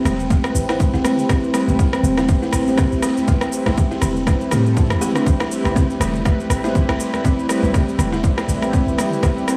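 Light reverb frames this driving, warm afro house excerpt at 121 BPM in A minor, where a punchy, overdriven electronic kick and an overdriven deep house kit of rim click, shaker and toms in small room ambience swing over a deep, boomy 808-style bass, very quiet high-tuned congas with soft hands, a woody, buzzing kalimba playing arpeggios through analog delay, dark, detuned synth brass stabs with a filter sweep, and a smooth, warbling analog pad holding an Am7 chord in the background, the pitched parts all pumping with sidechain.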